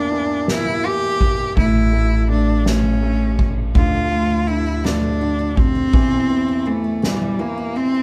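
A slow, straight 6/8 sway at 55 BPM carries this aching, dramatic pop ballad in D minor, drawn from a longer piece, as a rich, bowed cello sings the melody up front with smooth vibrato over a vintage-toned grand piano and a woody, thumpy pizzicato upright bass. A soft-mallet drum kit adds a boomy kick, fat snare and dark ride cymbal. At 3.8 s a very quiet picked steel-string acoustic guitar joins with arpeggios as the chords move from Edim through A to Dm and C/E, the whole band sounding live together in a small room with moderate reverb.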